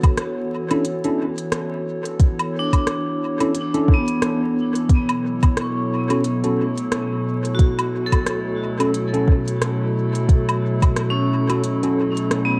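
A dark, crackling vinyl haze and a moderate hall reverb frame this deep, spacious ambient dub excerpt at 89 BPM in B minor, swung on the sixteenths and moving from Bm11 to F#m/B. A warbling, detuned tape-like pad holds sustained chords with chorus and its own reverb, while a metallic, ringing vibraphone struck with hard mallets spins arpeggios through dub echo with a fast motor vibrato. A soft, up-front electronic kick and a quieter electronic kit of crisp hi-hats, rim clicks and woodblock sit in a small room, and a mellow, clean tine electric piano adds phased, echoing stabs from 0.7 s to 12.0 s.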